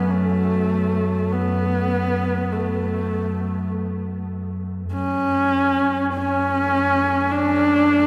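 In free time, this short excerpt from a longer dark ambient drone piece unfolds with a dark, ominous mood, anchored by a deep rumbling drone that sits up front with a slow attack and long, sustained release. Above it, a husky, woody horsehead fiddle carries the melody in a narrow low range with vibrato and portamento, its bowed horsehair tone trailed by tape echo, while a very quiet, breathy wind-like noise texture hovers in the background. The whole is steeped in a cavernous cathedral reverb that lets each sound hang in the air for seconds.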